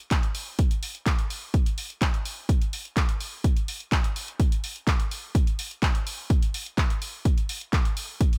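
A straight 4/4 house groove at 126 BPM, sensual and nostalgic, is carried by an up-front, punchy, tape-warm layered electronic kick and a quieter analog drum machine of handclaps and sidechain-pumped hi-hats with a small-room tone, all dry across this brief cut of a longer piece.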